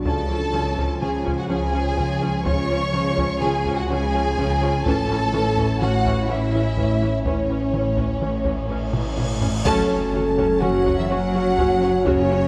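A cinematic hybrid of orchestral and electronic film scoring, this 125 BPM passage in 5/4 and F# minor is cut from a longer piece and feels relentless and tense. Violins carry the melody with soft-attack, expressive vibrato, while a second violin line and a background viola section fill in smooth, lush bowed harmony. The dark French horn section stands out most, holding punchy sustained chords over a warbling, nostalgic tape-like pad with chorus and its own built-in reverb. Underneath, a rich cello section, a woody, distant double bass section and a deep, rumbling detuned saw bass anchor the low end, while a close, dry taiko ensemble struck with hard sticks drives from the background. The harmony moves from C# to A. At 8.6 seconds a huge cymbal swell begins, joined by a drum fill at 8.9 seconds, building toward a band accent and massive impact at 9.7 seconds as the music lands on F# minor, all set in a wet scoring-stage reverb.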